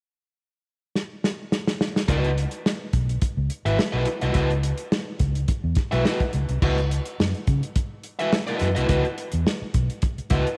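Funk in C# minor at 106 BPM, sly and driving, opens with a dry, pumping soul drum kit of tight kick, medium-tuned snare, dark cymbals and hi-hat playing a fill from 0.9 seconds, before a round, foam-muted fingered electric bass and a biting, picked overdriven guitar with spring reverb enter together at 2.1 seconds on a C#m11 chord, all three up front in a moderate echo chamber.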